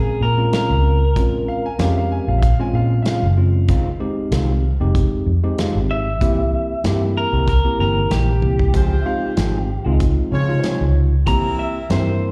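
A slightly broken-up, lo-fi electric guitar through a small old amp carries the melody over a clean tine electric piano from the start of this brooding, smoky soul blues excerpt in F minor at 95 BPM. They are soon joined by a dark, round, foam-muted fingered bass up front, a tight-kicked soul drum kit with a rolled-off top, and a mellow, clean electric guitar playing stabs in the background, while a clear, woody upright piano adds a second line. After a drum fill at 8.4 seconds, a brilliant horn section enters at 8.7 seconds with sustained chords and light vibrato, all heard as a live gig through the venue's PA, with slapback echo on the guitars and pianos, analog delay on the lead, and small room ambience and recital hall reverb over chords moving from Bbm7 through Fm7 and C7 to Dbmaj7 and back to C7.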